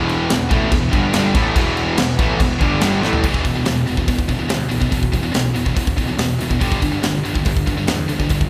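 Heavy metal in E minor at 142 BPM, epic and weighty, where a soft, shimmering pipe organ on celeste string stops holds the opening Em while a double-tracked crunchy overdriven guitar riffs alongside two bright high-gain guitar riffs, a growly fuzz bass and an up-front drum kit with bright cymbals, a high-tuned snare and a tight kick, until a drum fill at 3.0 seconds sends the organ and crunchy guitar out and the band drives on through E5 and G5 under a moderate cathedral reverb.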